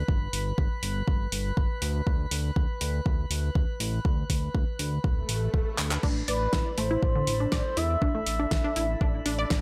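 A fat, saturated analog bass and a glassy texture of drifting overtones open this driving, emotional progressive house excerpt at 121 BPM, with the bass pumping under the sidechain and the calm, sine-based texture shimmering through chorus and its own reverb. A deep, tape-warmed electronic kick lands up front almost at once. It is joined by a deep house kit of fat snare, handclaps, hi-hat and crash cymbal, layered and re-recorded in a small room for a close, weighty sound. The harmony moves from G to D5. A short electronic swell sounds from 5.2 s, and a drum fill at 5.8 s leads into an Amadd9 chord at 6.0 s. There a lush, detuned unison pluck begins arpeggiating through dub echo, and at 6.3 s a smooth, expressive sawtooth-and-triangle lead enters with vibrato, chorus and a moving notch, its mellow tone also trailing dub echo over light reverb.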